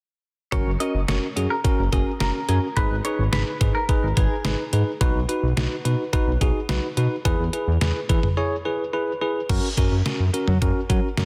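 Dense and heavily limited, this short synth-pop cut sits in light reverb and digital ambience, with a cool, nocturnal mood and a straight 4/4 pulse. Up front, a detuned 8-bit digital drum machine supplies a thumpy kick, fat snare, hi-hat, toms and crash cymbal with an electronic, sampler-style, tape-warm character. Alongside it, a smooth synth bass blends sawtooth, square and triangle tones, saturated and ring-modulated, and holds sustained notes with a fast attack. A bell-like tine electric piano, bright and played through its built-in speakers, carries the accompaniment over chords moving through F#, G#m, B and E before returning to F#. A clean, twangy picked electric guitar adds a compressed, scooped second line with tremolo and digital delay, stopping at 4.6 seconds. A break arrives at 8.4 seconds, and a new section opens at 9.5 seconds before this fragment of a longer piece ends.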